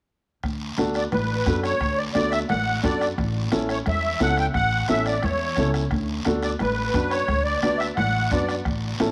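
Sunny and danceable, this cumbia fragment features a reedy, shimmering musette accordion melody up front from 1.0 s, over a dark, mellow upright piano with long sustain that enters at 0.8 s. Beneath them, a woody pizzicato upright bass sits up front, joined by a raspy guiro, while a soft-beater bombo and ringing, high-tuned congas stay in the background. The bass and percussion begin at 0.4 s under light reverb as the harmony moves between D and A.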